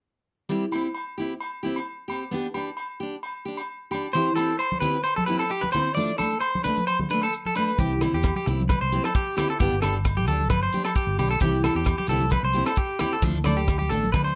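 Joyful and danceable, this highlife guitar band excerpt moves at 132 BPM in C major, opening at 0.5 seconds with a bright, full-bodied jumbo acoustic guitar picking out the accompaniment up front over ringing, vintage-toned agogo bells. At 4.1 seconds a twangy electric guitar at the edge of break-up adds picked arpeggios with slapback echo alongside grainy, close maracas, and medium-tuned congas with soft hands follow shortly after. From 7.8 seconds a round, amped fingered electric bass and a dry, tight funk drum kit with hi-hat, tight kick and rim click fill out the groove, all within a light reverb.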